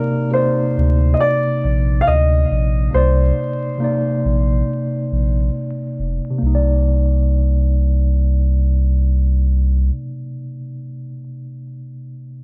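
A round, sine-like sub bass stands out most in this reflective, melancholic lo-fi hip hop excerpt, entering at 0.8 seconds with a fast attack and sustained, up-front notes until 9.9 seconds. A dark, woody upright piano carries the melody in a mellow, natural voice through a low-pass filter and analog delay, and it falls away at 5.5 seconds. Beneath it, a tine electric piano plays the accompaniment throughout, clean and close, with the sound of built-in speakers, a cassette-tape tint and its own low-pass filter. The music opens on a Cm9 chord and moves in an unhurried 4/4 with a gentle swing on the sixteenth notes, tuned slightly below standard pitch to A4 = 436 Hz. A filter sweep runs through the opening section, and the whole mix sits in light reverb with vinyl crackle and a soft low-pass haze.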